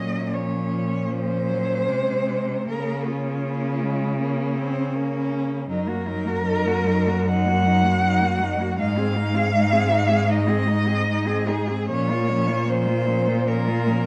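Rubato and unhurried at 78 BPM in 4/4, this serene, lyrical classical passage for four bowed cellos in Bb minor is cut from a longer piece and moves through Bbm, Bbm/Db, Ebm/Gb and Ab before returning to Bbm at 11.9 seconds. The melody cello sings up front with vibrato and expressive portamento, its tone slightly distant, while a second cello traces a gentle, soft-attacked inner line and a close, warm-toned accompanying cello adds gliding, vibrato-laden support. Beneath them a rich, focused bass cello with a smooth top sits prominently, all set in a moderate recital-hall reverb.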